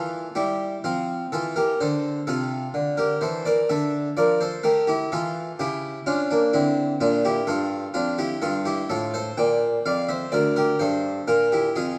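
Grave and flowing, this fragment of a longer baroque-style suite movement unfolds in triple metre with a freely breathing, rubato pulse. A solo harpsichord carries it all, its plucked, full Italian-style voice from two sets of strings sitting up front and spanning from D2 up to G5. The harmony moves from an opening Emadd11 through F and D minor, darkens on a C#dim7 near 5.6 seconds, then settles back to D minor before turning to G minor and closing on a bare Bb5. A moderate scoring-stage reverb lends the instrument a measured sense of space. The sound is worn like an old cassette, its pitch warbling and drifting in a way that gives the stately music a faded, wavering quality.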